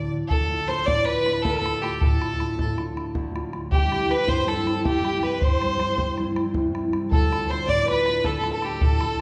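Two bowed fiddles and a concert harp open this wild, dark and lively Celtic slip jig in 9/8 at 106 BPM in D dorian, with a rich, smooth fiddle carrying the melody up front over a dark, woody, distant second fiddle, both with light vibrato, while the mellow, thumb-plucked harp rings out beneath and an open, boomy bodhran joins close at 0.3 seconds, the whole cut from a longer piece moving from Dm to C and back to Dm in the wet reverb of a recital hall.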